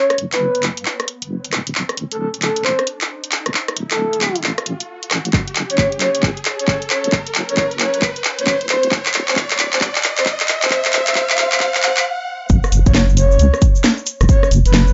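A breathy, flute-like synth lead carries the melody through a filter sweep above a deep, wobbling sawtooth bass with sidechain pumping, a garage drum kit of cracking snare, handclaps, rim click and hi-hat, and an electronic riser in this moody, skippy two-step UK garage excerpt in F# minor at 134 BPM, with a punchy, tape-warm electronic kick arriving at 5.3 seconds, a brief stop, and a drop at 12.5 seconds where a grainy cabasa joins in the background.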